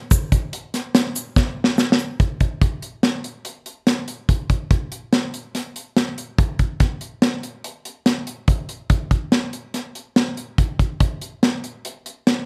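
A studio drum kit sits up front in this driving, bright progressive instrumental fragment, with a punchy kick, a high-tuned snare, hi-hat and a mid-forward, rolled-off top, pushing a straight 143 BPM pulse in 5/4. A grainy, close and dry tube shaker plays in the background until 2.1 seconds, and a drum fill from 1.4 seconds carries the kit into a new section at 2.2 seconds. Light reverb gives the room a touch of space.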